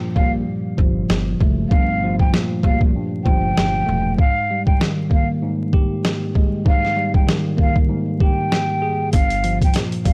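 Tough and gritty, this boom-bap hip-hop clip rides a swung sixteenth-note feel in 4/4, with a dry hardware sound colored by transformer saturation and vinyl crackle inside a digital ambience. A sampler-style drum kit sits up front, compressed and pitched down, with a thumpy kick, a medium-tuned snare and hi-hat. A bell-like tine electric piano carries the accompaniment from the start, bright and clean through its built-in speakers and filtered at both ends, moving from Gm9 to Fm11/Ab and on to Gm7. Above it a metal jazz flute plays the melody, breathy and hollow with vibrato, a soft attack and lifted highs, also shaped by high- and low-pass filters. A woody pizzicato upright bass on gut strings plays under the opening until 4.1 seconds, then returns at 9.1 seconds for the final chord.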